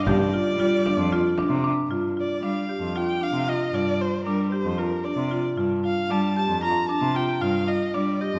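A warm, expressive violin with vibrato and portamento opens this restless, urgent fragment of contemporary chamber music in 7/8 at 229 BPM in G minor, joined at 0.1 s by woody, percussive arpeggios from a hard-mallet marimba, an earthy, nasal bowed cello bass close and up front, and a deep, distant frame drum in the background that drops out at 1.6 s, the ensemble heard in a moderate concert hall reverb.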